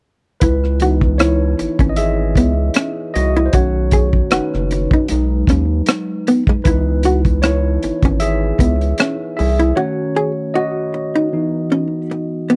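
R&B and neo-soul with an introspective, sultry mood and a lightly swung feel, this dry, close 1970s-style excerpt features a barky tine electric piano soloing through a phaser over a hollow-body archtop guitar second line, a round analog bass and a crunchy, gritty breakbeat kit of hi-hat, punchy kick and rim click, until the bass and drums drop out around 9.8 seconds for a break that leaves piano and guitar alone.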